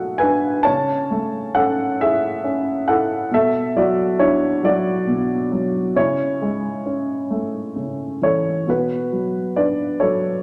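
Tender and warm, this brief excerpt from a longer classical piece features a lone upright piano playing lyrically at a slow, rubato 45 BPM in 6/8. The instrument sounds dark, mellow and woody, with a worn, slightly detuned character, sitting up front yet bathed in the wet reverb of a large scoring stage. Its harmony rocks gently between Bm7 and Amaj7/C#, and the opening phrase begins again at 8.7 seconds.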